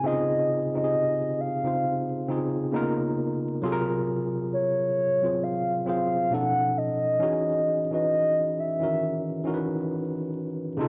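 A hollow, woody synth lead with a clarinet-like voice carries the melody up front, soft and dark with vibrato and a chorus sheen on a cassette-tape grain, until it drops away at 9.5 seconds. Beneath it a worn, slightly out-of-tune tine electric piano, lightly overdriven and heard as if through built-in speakers, plays lush extended chords such as Db69, Gbmaj9 and Emaj9 through to 10.9 seconds. This warm, soulful slow R&B fragment sways at 67 BPM with a gentle sixteenth-note swing, set in a small booth and wrapped in the grain of a home cassette recording and vinyl crackle.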